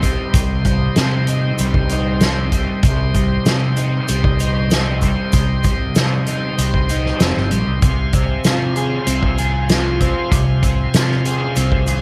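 An overdriven, double-tracked semi-hollow guitar riff sits up front, its hollow-body tone spun through a rotary speaker, over a round, punchy fingered electric bass, a soft-mallet drum kit with a boomy kick and fat snare in a big room, a grainy egg shaker in the background and a bright, shouting tonewheel organ holding sustained chords through a slow rotary effect, all forming this trippy, dark psychedelic rock passage at 96 BPM in C minor that shifts from Cm to Fm/C at 7.8 seconds under light reverb.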